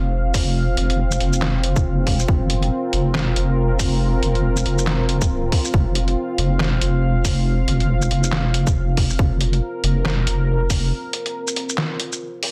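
Deep dubstep at 139 BPM in a swung, half-time 4/4 feel, heavy and cavernous. A dark, detuned analog pad with a sawtooth edge holds sustained chords under chorus from the start, while a deep, wobbling bass with a soft triangle-and-sine tone sits up front until 10.9 s. A tight, tape-warm electronic kick re-recorded in a large room joins from 0.3 s beside a muffled, pitched-down sampler-style kit of handclaps, hi-hat, shaker and snare, and the pad and kit carry a brief break to the end of this cut-down fragment from a longer piece, all within digital ambience and a dense, heavily limited master.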